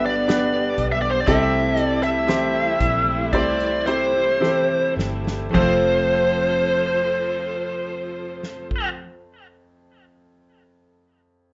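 A slow, straight 4/4 pulse of 52-62 BPM that eases down through the opening 5.5 seconds carries this tender, emotional pop ballad fragment in F major, where a bright, overdriven lead guitar sings the melody up front over clear, polished grand piano, lush bowed strings with vibrato, a full-bodied fingerpicked acoustic guitar with finger squeak in the background, a round, foam-muted electric bass and a dark, punchy country drum kit whose fill at 4.4 seconds leads into the next section, with the piano ringing on alone until 11.5 seconds, all in a rough home-demo mix with a dull top and wet studio reverb.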